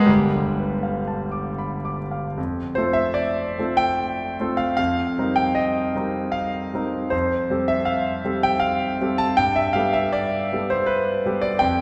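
Rubato phrasing in 3/4 at 78 BPM sets a luminous, hazy mood in this impressionist classical fragment for solo piano in F lydian, tuned to A4 = 441 Hz. A bright concert grand with brilliant highs, deep bass and long sustain ranges from G1 to D#6, moving from an opening G9 to F at 2.4 s and then through Eb69/F, Fadd9 and Gadd9. A wet scoring-stage reverb with a 2.0 s decay places the listener further back in the room, and the passage is cut from a longer piece.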